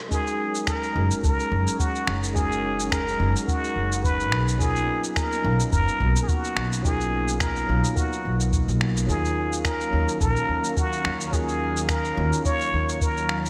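A raspy, growling trumpet with a plunger mute sits up front, playing a jazz-style solo melody with scooped notes, light vibrato and a digital delay over a sunny, relaxed sunset chillout groove at 107 BPM in F# major, swung on the sixteenths. Beneath it, a clean tine electric piano and a soft, breathy pad with chorus and phaser hold the chords through F#69, Bmaj9#11 and D#m9. A deep, tape-warm electronic kick and gritty shaker and finger snaps with gated reverb drive the beat, while a woody, dark pizzicato upright bass joins at 1.0 s. The whole cut from a longer piece is set in a lush hall ambience with bright 1980s-style digital production.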